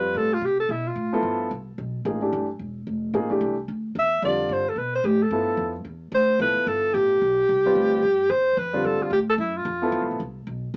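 A breathy alto saxophone, a warm baby grand piano and a woody, thumpy pizzicato upright bass open this spiritual, hypnotic modal jazz passage together, cut from a longer piece with a swung feel over Fmaj9 and Csus2 harmony. The mellow, subtone saxophone carries the melody with light vibrato, falls silent after a brief phrase, and returns at 4.0 seconds, while the piano's short-sustained accompaniment and the bass continue beneath it. The sound is steeped in light reverb and the worn, warbly pitch drift of old cassette tape, heard as if through a small speaker.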